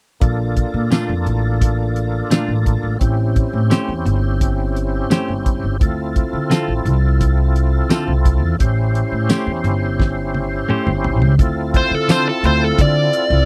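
A straight-eighth soul blues groove in 4/4 at 86 BPM carries this brooding, mournful excerpt, driven by a damped 70s drum kit with a fat snare, tight kick, hi-hat, tambourine and toms, its rolled-off top sitting dry and up front. Underneath, a woody pizzicato upright bass holds the low end, while a tonewheel organ fills in full, lightly overdriven chords through chorus vibrato and a slow rotary speaker. A clean electric guitar cuts in with bright, twangy, scooped stabs from 0.9 seconds, compressed and close. The harmony moves through Bbmaj7, A7#9 and Dm7, and a drum fill leads into a new section at 11.4 seconds, where, from 11.8 seconds, a dark, smooth, overdriven lead guitar picks out a short solo melody. The whole take has the close, dry sound of a 1970s studio with little reverb.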